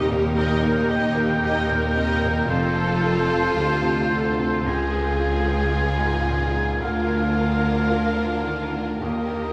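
A lush violin section with warm, focused vibrato carries the melody in this uplifting, hopeful cinematic film-score passage at a rubato 56 BPM in Bb major, joined on second lines by a distant, roomy cor anglais and a soft-attacked background violin part, while a bright, intimate baby grand piano with audible action noise and a smooth viola section accompany, and a clear cello section and an even, distant double bass section anchor the bass through Eb, F, Db and Bb/D chords inside a huge ambient reverb that suggests a vast, echoing space.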